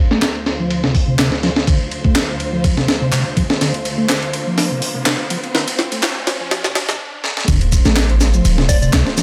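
Energetic, funky breakbeat excerpt in which a gritty, pitched-up sampler drum kit with a thumpy kick and high-tuned snare sits up front alongside layered electronic handclaps and shaker, while a mellow, flute-like tonewheel organ riff spins through a fast rotary speaker and tape echo over dark, bowed string chords that pump against the beat. Filter sweeps on the drums and organ drive a build-up as a background riser climbs from 1.9 seconds, drum fills roll in, and a brief stop at 7.0 seconds clears the way. At 7.5 seconds the drop lands with an impact and a deep, boomy 808-style bass, and a round, warbling FM lead flickers through a telephone-like filter just before the cut.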